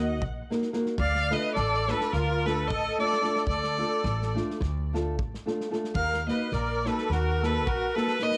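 Up front, a clear, bowed violin with vibrato and a touch of tape echo carries the melody in this restless, virtuosic Balkan wedding-band fragment in 9/8, joined by a reedy, shimmering musette accordion second line, a small thumb-plucked nylon-string guitar with audible finger squeak, a woody, gut-string upright bass played pizzicato that stops at 7.8 s, and a low-level country drum kit with a punchy kick and medium-tuned snare, all set in a small room.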